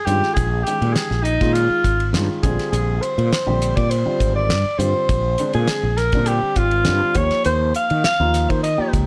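Electric jazz fusion at 102 BPM in a straight 4/4, this short excerpt from a longer piece carries a driving, nocturnal mood. A breathy alto saxophone leads the melody from the start, its soft attack, light vibrato and whispered, intimate tone sitting up front yet roomy, touched by a slapback echo. Beneath it, a dark baby grand piano supplies mellow accompaniment with short sustain and audible action noise, while a round, punchy fretless electric bass anchors the low end with a direct, forward presence. A damped 70s drum kit keeps time on hi-hat, kick, ride and snare, its fat snare, tight kick and dark cymbals giving a dry, polished feel with a rolled-off top. The harmony moves from Bbm7 to Bb9 at 2.4 seconds and settles on Eb69 at 7.2 seconds, all framed in light reverb.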